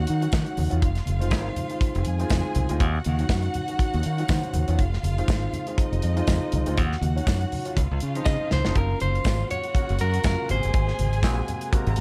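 A dry, close-sounding disco cut with a glamorous, sultry mood, moving at 121 BPM with a swung sixteenth feel in Eb dorian as the harmony sways between Ebm9 and Fm7 before shifting to Gbmaj7 and Ab9. An up-front, bright fingered electric bass and a punchy acoustic kit with a medium-tuned snare, hi-hat and rolled-off top drive the groove, while very quiet low-tuned congas played with hard hands and a jingly tambourine sit in the background. A natural-sounding grand piano accompanies and adds a fill at 3.8 s, a lush bowed violin section with vibrato carries a second line, and as a drum fill begins at 8.3 s, a clean, picked and compressed electric guitar takes the melody.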